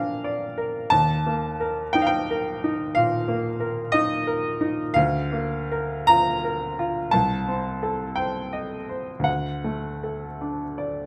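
A clear, natural-sounding baby grand piano carries this brief romantic nocturne entirely on its own, placed up front in the sound with a short sustain to each note. The mood is melancholic and wistful, with a slow, rubato pulse in 4/4 that drifts between 51 and 62 BPM. Spanning C2 to Bb5, the harmony moves from Bb7 through Eb5, Bb/D and Adim/C before settling on D at 9.3 seconds. Close, detailed microphoning captures the instrument in a light reverb, and its tuning sits at A4 = 435 Hz. Cut from a longer piece, this 11.1-second passage feels like a fragment of a quiet, private reverie.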